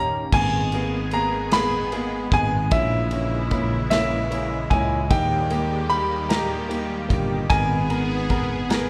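In a slow, straight six-eight lilt, this melancholic, dramatic pop ballad fragment sets a present, long-sustaining baby grand piano melody over a bright, woody upright piano accompaniment and a lush, detuned sawtooth pad thickened by chorus and phaser, while a growly fretless electric bass and a dark, smooth acoustic drum kit of kick, snare, ride and crash join at 0.3 s, and a mellow, distant French horn section adds a second line from 5.1 s, the band heard playing live together in a large studio's moderate reverb.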